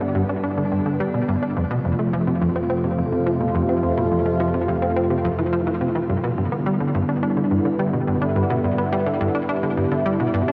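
A vast, wet reverb with a 7.7-second tail and the warbling pitch drift of a worn cassette tape frame this short cut from a longer ambient piece of sequencer-driven space music, which feels expansive and cosmic. It moves at 106 BPM in a straight 4/4, sits in G mixolydian, and is tuned to A4 = 438 Hz, with the harmony shifting from G to F and then to G6 at 6.1 seconds, where the opening section repeats. Up front, a plucky analog bass plays a punchy, funky riff built from sawtooth and pulse waves, its fast-attack filter pluck decaying under subtle chorus and tape echo. Beside it, an evolving, detuned sawtooth pad holds sustained chords with a slow attack, a filter swell, a moving notch and a long release, colored by chorus and a phaser. In the background, a warm analog drone hums low, blending sawtooth, pulse-width-modulated and wave-folded sine tones with chorus.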